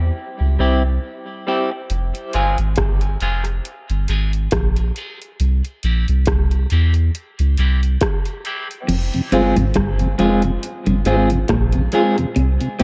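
A swung 69 BPM pulse in 4/4 anchors this spacious, hypnotic dub reggae excerpt in F harmonic minor, where a deep, round sub bass and a clean, picked electric guitar carrying tape echo and a filter sweep open the break before a punchy, layered electronic drum kit of kick, hi-hat, rim click and crash arrives at 1.9 seconds, then a compressed, twangy second guitar riff with vibrato slips in behind at 8.9 seconds and a mellow, dark tonewheel organ with chorus vibrato and slow rotary speaker settles into the background at 9.1 seconds, all within a light reverb.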